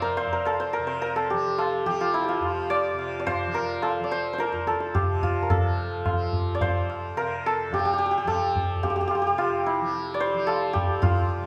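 A straight four-beat pulse gradually speeds up across this short passage of Hindustani classical music, cut from a longer performance and set in raga bilaval. The mood is devotional and radiant. Up front, the hammered santur carries the melody with a shimmering, ringing tone that reaches from its middle register into its upper range. Beneath it, a bright, softly plucked tanpura sustains a buzzing low drone throughout. The high-tuned tabla enters at 0.2 seconds and plays until 11.2 seconds, its strokes carrying a short ring. The performance sits in a reverberant recital hall, giving the music a lingering, sacred resonance.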